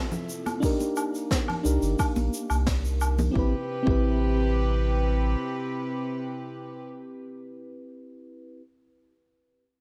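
Sunset chillout with a smooth, wistful mood, this short cut from a longer piece opens on a soft, round FM electric piano carrying chorus, tape and delay, over a reedy, gut-string chamber section whose sustained chords pass through a filter sweep until 3.4 seconds as the harmony moves from Dm9 and Cm9 to Am9. A distant, roomy brush kit with high-tuned snare and close, dry congas struck with hard hands play until 3.3 seconds, while an overdriven, layered electronic kick thumps beneath. A deep, round sine sub bass sits up front from 1.7 seconds, all in a light small-room ambience.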